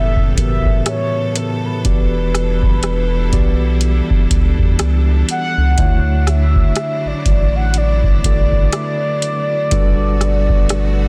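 A booming analog drum machine enters at 0.2 seconds with a deep kick, metallic hi-hats and rim clicks, softly clipped on the snare, setting a slow 61 BPM groove in 4/4 with a 16th-note swing under a round, dark analog bass. This dreamy, smooth contemporary R&B fragment in D major moves through A13, Em9, Dmaj9 and Gmaj9. A horn-like synth lead with chorus and vibrato carries the melody over a clean tine electric piano, lush bowed studio strings and a faint, slightly out-of-tune celesta that stops at 10.2 seconds, all in a dry, dense, heavily limited mix.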